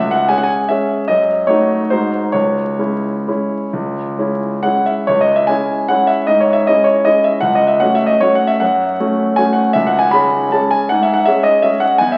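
A clear, up-front concert grand piano plays alone through this 12.2-second cut from a longer classical waltz in C# minor, its elegant, bittersweet 3/4 phrasing moving with free rubato between 124 and 172 BPM and passing into a new section at 5.1 s, while deep bass notes, a wet recital-hall reverb and the crackle of a very old 78 rpm record give it a vintage cast.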